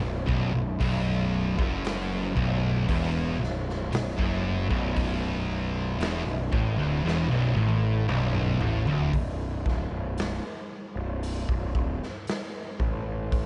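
Stoner and doom metal with a sludgy, brooding mood, this slow, straight-feel passage is cut from a longer piece and built on one heavy riff. Two dark thick fuzz guitars, one in the background and one very quiet, join a bright, scooped, double-tracked distorted guitar in the background, while an up-front, growly overdriven picked bass anchors the low end and a raw garage drum kit with a punchy kick and gritty, saturated sound enters at 0.3 seconds. After a drum fill from 7.0 seconds, the guitars drop out at 9.1 seconds, leaving bass and drums, the kit's top end rolled off, in light reverb.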